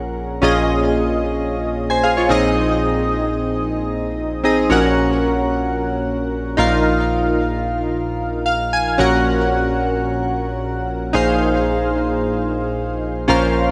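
Bathed in a moderate, lush hall reverb with a 2.5-second tail, this moody, nostalgic pop fragment at 112 BPM in a straight 4/4 features a lone chorused retro synth keyboard, glossy and bright, built from detuned pulse and sawtooth waves with pulse-width modulation, a filter sweep, fast attack, decaying notes and delay, sitting up front. Its chords all rest over Bb, moving from Dbadd9 to Gb, Ebsus2 and Fm7, and a brief synth fill at 8.2 seconds leads back into the Gb chord at 9.0 seconds before the clip is cut off.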